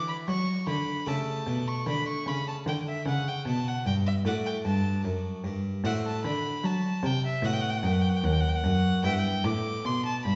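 Heard from further back in a reverberant recital hall with a softened top end, this flowing, introspective fragment of a baroque-style sonata movement in 4/4 at 75 BPM features an airy-bowed, gut-string violin singing the melody over brilliant, plucked harpsichord with octave strings and a nasal, reedy period-style cello on the bass line, moving from D and A7 harmonies into E minor at 5.8 s through F#m7b5/A and B7 before settling on Em/G.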